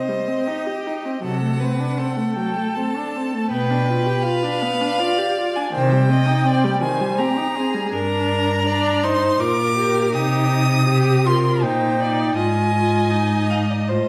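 In a 3/4 at 81 BPM, played with free rubato, this slow romantic movement for string quartet unfolds in a tender, serene mood, cut from a longer piece and tuned to A4 = 442 Hz. The first violin carries the melody with a rich, focused, vibrato-laden tone, bowed up front between D5 and Eb6, while the second violin sings a bright, smooth and even second line from G4 to Eb5 that sits more distantly in the blend. The viola fills in the accompaniment with a warm, expressive voice, colored by vibrato and portamento and capped by a smooth top. The cello joins at 1.2 seconds, holding the bass between G2 and C3 with a close, even tone that stands up front in the mix. Harmonies move from C minor through D7/C and G7/B, return to C minor, pass through G minor and back to C minor, and settle on Fm7/Ab, all heard from further back in a wet recital hall with a reverb tail of 1.3 seconds.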